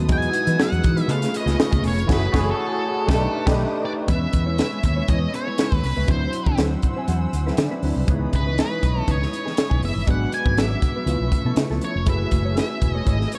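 An octave-fuzz lead guitar carries a picked, distorted melody over barky, overdriven tine electric piano with ensemble chorus, a round, amped fretless bass, a clean, compressed background guitar riff with analog chorus, veiled con sordino strings and a punchy, up-front fusion drum kit with a high-tuned snare, giving this breezy, glossy snippet of polished 1980s jazz-funk pop a dark small-room sheen, with a band accent from 2.1 to 4.1 seconds and an electric piano fill at 6.6 seconds.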